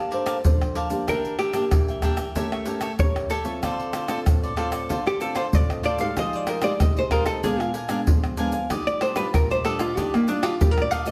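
Heard from a bit further back in a studio with a wet reverb, this festive, joyful samba and choro excerpt in Bb major moves at 94 BPM in a straight 4/4. A dark, clean, compressed hollow-body archtop guitar sits up front and carries a picked solo melody, while a crisp cavaquinho and a fingerpicked classical nylon-string guitar supply acoustic accompaniment. From 0.1 seconds, a close, dry percussion group of pandeiro, egg shaker, tamborim and tight surdo played with soft hands drives the groove, as the harmony moves through chords such as Bbmaj9, A7b9, Fm9 and Ebmaj9.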